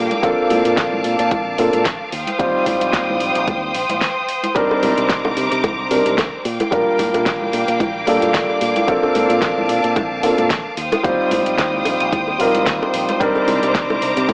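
A dark, mellow baby grand piano and a lush, bowed symphonic violin section open this sleek, groovy nu-disco excerpt, both sitting up front and pumping under sidechain compression, with dub echo trailing the piano's accompaniment. A fingered electric bass runs beneath them from the start, bright and punchy through its envelope filter and tube saturation. The pop drum kit and a ringing trio of congas, bongos and cabasa come in at 0.1 seconds, and a punchy, tape-toned electronic kick lands at 0.2 seconds, its layered, produced sound matched by the kit's fat snare and metallic hats while the hand percussion stays in the background. At 111 BPM in 4/4 with a light 16th-note swing, the piece sits in C dorian, tuned to A4 = 438 Hz, and cycles through Bbmaj7, Eb69, Cm9 and Gm7/Bb. The violins' intense vibrato carries sustained chords above the groove, and light studio reverb and an AM radio sound color the whole mix.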